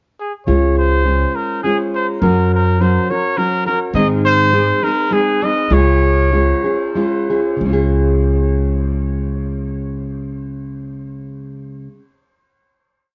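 A dark, warm production with a moderate studio room frames this short, complete mariachi piece in Db major and 3/4, played with a rubato feel around 90-105 BPM and tuned to A4 = 435 Hz, carrying a romantic, proud mood. A clear, vintage-toned trumpet sings a classical-style solo melody built from motif-based period phrases, touched with plate reverb and tape echo, entering at 0.2 s and falling silent at 7.0 s. Up front beside it, a full-bodied nylon-string guitar with fresh strings mixes fingerpicking and folk strumming in open chord shapes, while a woody, thumpy pizzicato upright bass plays root and fifth on the main beats. The ensemble slows down before the guitar and bass settle into a held final chord that rings until about 12 seconds.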